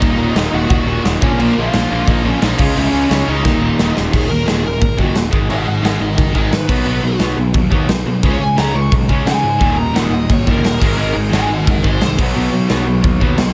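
The sound carries light reverb, with a big-room drum kit placed up front, its punchy kick, medium-tuned snare and crashing cymbals driving an aggressive, angry punk rock fragment at 175 BPM in Eb minor. A growly, fuzz-soaked picked bass plays underneath, overdriven and bright. Behind it sit three picked rhythm guitars playing the riff: a distorted one, a rougher overdriven garage one, and a double-tracked distorted one that drops out from 4.1 to 9.6 seconds. A dark, bluesy lead guitar carries the melody from the start, distorted and trailed by tape echo. After a drum fill, it breaks into a solo at 4.1 seconds and stops at 12.2 seconds over the churning Ebm, Ab and B changes.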